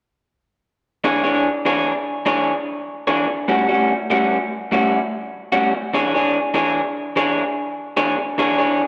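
A wet, echo-chamber ambience surrounds this laid-back, rollicking blues excerpt in E mixolydian at 98 BPM with a swung 4/4 feel, where a lone electric guitar through a small old amp plays up front from 1.0 to 8.8 seconds, its picked tone slightly broken-up, compressed and lo-fi with spring reverb, ranging from A2 to C#5 over E6 and A6 chords.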